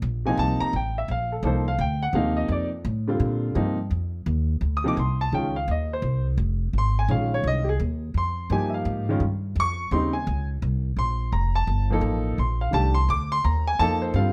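A warm, natural baby grand piano sits up front from 0.3 seconds, voicing rich chords that move from Bbmaj9 to Dbmaj9 and back to Bbmaj9, while a woody, pizzicato upright bass on steel strings, equally close, anchors this short, swinging jazz excerpt with an open, spiritual mood, captured in clear detail with light reverb.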